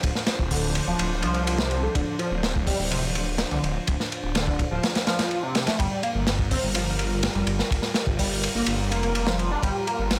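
A crunchy, up-front breakbeat kit with a tight kick and dark cymbals kicks off this gritty, raw 125 BPM breaks cut in G minor alongside a thick, swirling detuned saw bass and a phased analog pad pumping in the background over Dm7 moving to Gm7 at 5.8 seconds, while from 0.5 seconds a screaming, guitar-like overdriven synth lead carries the riff through distortion, chorus, phaser, cassette tape and tape echo, all set in a light studio reverb.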